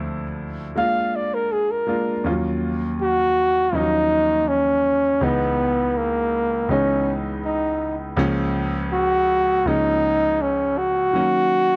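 Soul in a straight 4/4 with a lush, warm mood, this short cut from a longer piece opens on a clear, worn concert grand piano with deep bass, playing accompaniment up front. At 0.8 s a mellow flugelhorn enters to carry the melody in a jazz style, its light vibrato and scooped notes sitting present and forward as the chords move through rich seventh and major-seventh colors. Light reverb and a dark production frame the pair.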